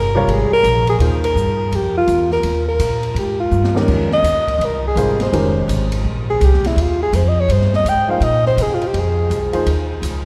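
A dark, vibrato-laden alto saxophone solo with scooped notes and a smooth top opens this searching, cool modal jazz excerpt in Bb dorian at 166 BPM with a swung feel, alongside a woody, growly pizzicato upright bass up front. They are soon joined by an intimate baby grand piano with audible action noise that comes and goes from 0.1 s, and an open drum kit with dark cymbals, a high-tuned snare and punchy kick that breaks into a fill at 3.5 s, all hovering over a single Bb9sus4 chord in a cathedral-like reverb.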